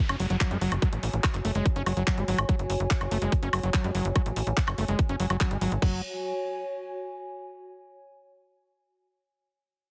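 Psychedelic trance with an intense, trippy mood, cut from a longer piece. A very quiet downlifter opens over a warbling, detuned tape-like pad with chorus and built-in reverb that pumps under the sidechain. A squelchy, resonant acid bass riff, distorted and fed through digital delay, rides above a tight, nasal sawtooth sequencer bass that drives up front, while a garage kit of crash, handclaps, woodblock and warm hats enters at 0.1 seconds and a tight electronic kick joins from 0.4 seconds. The bass, riff and drums drop out near 6.0 seconds, leaving the dusky pad alone until 7.4 seconds, all in a heavily compressed, radio-like mix with light digital ambience.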